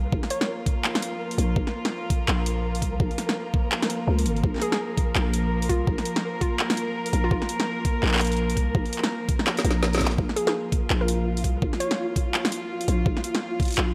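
Half-time drum and bass at 167 BPM with a swung sixteenth feel, this cinematic, heavy excerpt rests on a rich, bowed cello section holding soft, floating chords that pump under sidechain, over a growling, buzzy 808-style bass. Up front, an overdriven, knocking electronic kick and a drum kit of woody snare, bright hi-hats and handclaps drive the groove, with a short drum fill, while a grainy, flickering texture sits in the background. A hollow, bouncy square-wave pluck with chorus, dub echo and 12-bit sampler grit surfaces in brief phrases at 0.3 s, 4.6 s and 10.4 s.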